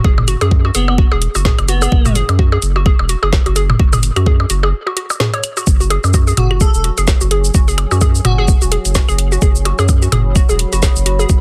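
Dense and heavily limited with light reverb, this sparse, hypnotic minimal techno excerpt runs at 128 BPM in 4/4 with a 57% swing on the sixteenths. An overdriven, knocking electronic kick sits up front beside a deep, thick saturated sub bass ranging from E1 to F#2, the bass pumping against the sidechain. A hollow, bouncy square-wave pluck carries the riff between F#4 and C#5, its detuned, warbling vintage tone colored by chorus and dub echo. A garage kit with a woody snare, metallic hats and shaker joins from 0.3 seconds, alongside overdriven electronic toms, blips and claves that throw dub echoes into a small room. An airy, dreamy lead with vibrato and a tape-worn sheen drifts in briefly from 0.7 seconds and again from 6.4 seconds, while a dark, moody sawtooth pad with a slow attack settles in from 6.9 seconds. A short break at 4.7 seconds separates two drops built on the same section.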